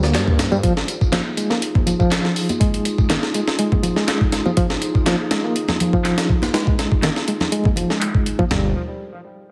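Breakbeat with a gritty, raw mood, this short cut from a longer piece rides a lightly swung groove over a moody Gm11 to Fm7 progression. A sampler-style breakbeat kit sits up front, compressed and gritty, with a thumpy kick, a high-tuned snare, hi-hat and toms, all treated with studio reverb and a filter sweep. Behind it, electronic tambourine and handclaps, re-recorded in a small room, sit low-passed in the background, joined by ringing, close and dry acoustic congas from 0.5 seconds. A barky, reedy electric piano plays a bright, lightly overdriven riff through its built-in speakers, shaped by fast tremolo, a low-pass filter and tape echo. A deep, dark analog pad holds sustained chords with chorus and sidechain pumping, while a thick, detuned, menacing saw bass appears only briefly at the start and again at 8.5 seconds. The overall sound is heavily compressed and radio-like, with light reverb and digital ambience.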